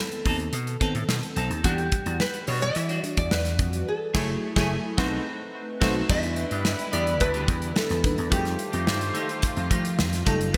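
A straight 4/4 groove at 108 BPM drives this slick, bittersweet excerpt of polished 1980s jazz-funk pop, where a tight, up-front studio drum kit with gated reverb and a punchy vintage slap bass support a full-bodied, fingerpicked nylon-string guitar melody with audible finger squeak, chorus and digital delay, over a dreamy FM electric piano with soft pad layer, phaser and chorus, a twangy clean electric guitar riff in the background, a tight jazz-style horn section with light vibrato and delay entering at 4.1 s, and a lush bowed string section adding soft sustained chords from 6.1 s, all moving through rich chords such as B7b9, Em9 and F#m9 in a bright digital production with a moderate hall reverb.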